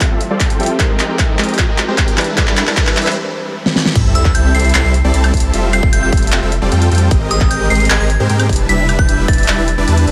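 A half-time future bass groove at 152 BPM in C major, this euphoric, lush excerpt opens with a build-up where a punchy electronic kick, a layered kit with a huge snare, handclaps, hi-hat, woodblock and crash, and a drum fill drive under huge detuned supersaw chords with sidechain pumping and a filter sweep, while a soft round pluck, a very quiet ethereal pad and a faint riser fill in the background. After a short break at 3.2 seconds, the drop lands at 4.0 seconds with an impact, bringing in a deep, thick saturated sub bass and a glassy, crystalline FM bell melody with chorus and tape echo, both pumping to the sidechain. The chords move through Fmaj9, Abmaj9 and Em7 to C6, and the whole mix sits in light reverb.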